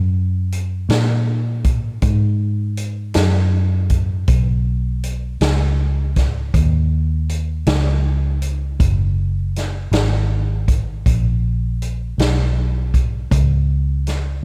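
Slow blues in Eb minor, moving at 53 BPM in a straight 12/8 with a smoky, soulful mood, this short excerpt is cut from a longer piece. A vintage muted fingered electric bass sounds dark, round and foam-muted through an amp, sitting up front from the start and ranging from Gb1 to Bb2. A vintage drum kit enters at 0.5 s with hi-hat, tight kick and a medium-tuned snare, its natural studio-room tone rolled off on top, all in a dry mix with little reverb.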